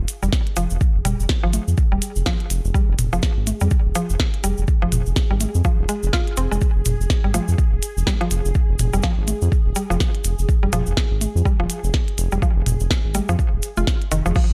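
A round, dark analog bass pumps under the sidechain at the front of this quirky, sparse minimal techno excerpt in F minor at 124 BPM with a 16th-note swing, joined by a deep electronic kick, a clicky kit with tiny snare and crash, grainy cabasa, tape-toned electronic toms and congas from 1.1 seconds, a woody, mallet-like synth pluck riff treated with chorus and digital delay, and a swarming, detuned drone held on one high note in its own reverb, all in a dry mix.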